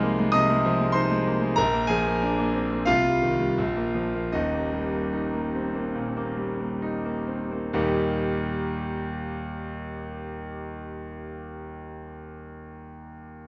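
Brilliant and heroic, this short cut from a virtuoso classical piano study in Eb major has a solo concert grand spanning Eb1 to F6 with a bright, up-front tone, deep bass and long sustain, played with rubato in 4/4 at 65-97 BPM, slowing from 0.3 to 7.7 seconds as the harmony moves from Fm7/C through Bb and Cm to Eb, all set in a moderate recital hall reverb.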